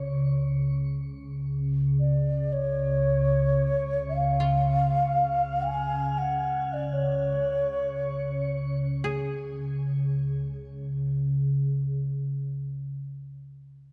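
The recording sits in a wet echo chamber with a 2.3-second reverb tail and an echo-heavy mix, giving this excerpt of free-time world meditation music in C# major a haunting, spacious feel. A hollow, airy bamboo xiao carries the melody up front, its crisp attack and vibrato blurred by shimmer reverb and tape echo. Beneath it a glassy, ethereal FM pad holds a full-bodied low drone with slow attack and long release, colored by ensemble chorus, its own reverb and a phaser. A quieter, woody koto played with fingerpicks adds texture in the middle register, bathed in shimmer reverb. The xiao falls silent at 8.5 s, and the pad and koto carry on alone through a brief closing passage until 12.0 s.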